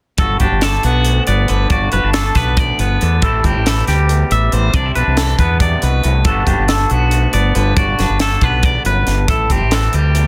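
Bright and intricate, this math rock and midwest emo passage in 7/8, cut from a longer piece, sets a slightly broken-up, lo-fi electric guitar with spring reverb, played through a small old amp, beneath clean, twangy fingered arpeggios from a second electric guitar, while an overdriven, growling fingered bass sits up front and a crisp, airy fusion kit with a high-tuned snare, punchy kick and hi-hat drives the Gmaj9, Am7 and Cmaj9 changes in a dense, heavily limited modern mix.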